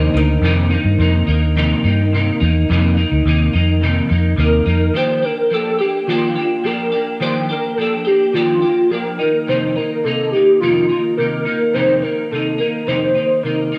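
Bathed in a moderate echo-chamber reverb, this sunny, hazy indie and bedroom pop excerpt at 106 BPM in 4/4 sets a clean, picked semi-hollow electric guitar with chorus and pitch drift over a dark, round, foam-muted electric bass that plays until 4.9 seconds, while a warbling, nostalgic lead of detuned, wave-folded tones with vibrato, chorus and slapback echo carries the melody from 4.4 seconds as the chords move from F7sus4 to Ebmaj9 and back.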